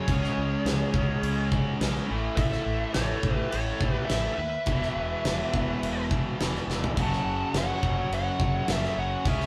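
Hard rock cut from a longer piece, aggressive and driving at 105 BPM in F# minor, with chords moving from C#5 through A and E5 to F#m. A biting, overdriven lead guitar carries the melody over a bluesy distorted second line in the background, while three picked guitars share the riff: a tight, bright distorted one, a double-tracked, compressed one sitting very quiet, and an overdriven hollow-body semi-hollow guitar tucked in the background. A round, dark fretless bass and an up-front gated 80s drum kit with a fat snare, punchy kick and rolled-off top drive the band, which plays live in one room with wet ambience, and a drum fill lands at 6.7 seconds.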